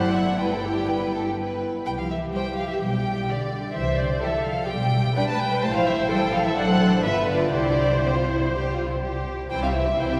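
Up front, an intimate first violin section with sul tasto bowing, soft attacks and light vibrato carries the graceful, lively melody of this quick classical-period string orchestra movement in C major at 126 BPM with a rubato feel, over a smooth, even second violin line, lush violas, dark cellos and distant, expressive double basses, set in a long, wet cathedral reverb with lossy compression artefacts.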